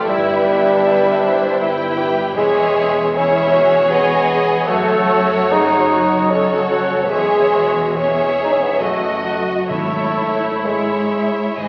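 Classical slow romantic orchestral movement in C# minor and 3/4, solemn and elegiac, moving with rubato at roughly 62-83 BPM in this short excerpt cut from a longer piece. Distant, lush violins carry the melody over a second violin line placed up front, while a solo bassoon with light vibrato sits forward in the accompaniment beside smooth, even violas; a ringing fingerpicked harp spreads arpeggios in the background, expressive cellos with portamento and a focused double bass section anchor the bass, and hard-mallet timpani join softly at 9.7 s as the harmony settles on C#m/G#. A wet scoring-stage reverb surrounds the orchestra, and the whole is heard through the crackle of a very old 78 rpm record.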